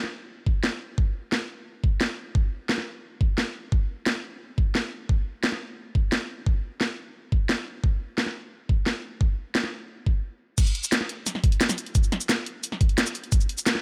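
A knocking electronic kick drum sits up front in this tense, aggressive drum and bass cut, layered and produced with the character of a small room around it. Beside it, a drum and bass kit of crash cymbal, bright hats, shaker and a cracking snare carries the groove in a straight 4/4, also electronic, layered and pushed forward in the mix. The kit opens the piece at 0.0 seconds, with the kick joining at 0.5 seconds. A brief stop at 10.2 seconds clears the way for a drop at 10.6 seconds that drives the final stretch. The sound is dry and close, with little reverb to soften the hits.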